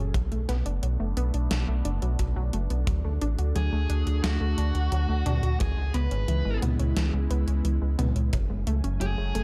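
Nocturnal and cinematic, this synthwave excerpt moves at 88 BPM in a straight 4/4 over a dark, warm production, where a swirling, detuned analog pad with phaser, chorus and sidechain pumping sustains chords through Bm7, D, C#m7 and F#madd9. A lush, detuned unison pluck carries arpeggios with 12-bit sampler grit and digital delay, a round, deep analog bass sits up front, and a gated 80s digital drum machine with overdriven, gated-reverb snare, hi-hat and toms joins a punchy big-room acoustic kick from 0.1 seconds. At 3.6 seconds a dark, smooth, overdriven electric lead guitar enters with a picked melody through digital delay.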